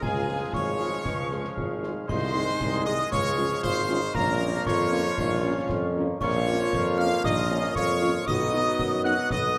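A rousing, festive military-style march for wind band opens with a clear trumpet section carrying the melody over a distant, roomy tuba bass, while piccolo with vibrato, a ringing bell-like glockenspiel struck with brass mallets, a background euphonium and woodwind section add second lines, a bright trombone section holds sustained chords, a concert snare drum, dark clash cymbals and concert bass drum drive the music forward, and a very quiet, dark French horn section joins at 0.3 seconds in accompaniment, all heard in a concert hall's moderate reverb.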